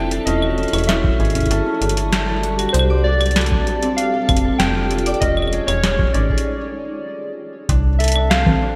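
An up-front metallic FM bass anchors this wistful, intricate IDM piece at 97 BPM, joined by a booming, tape-warm analog drum machine with crisp snare, hi-hat, claves and congas in gated reverb, a deep electronic kick entering at 1.0 s, ringing fingerpicked Celtic harp arpeggios, and warbling, nostalgic lo-fi synth keys carrying the melody through chorus and delay, floating over a blurred, evolving granular cloud pad, with a break at 6.5 s and a bright 1980s-style digital sheen set in a lush hall.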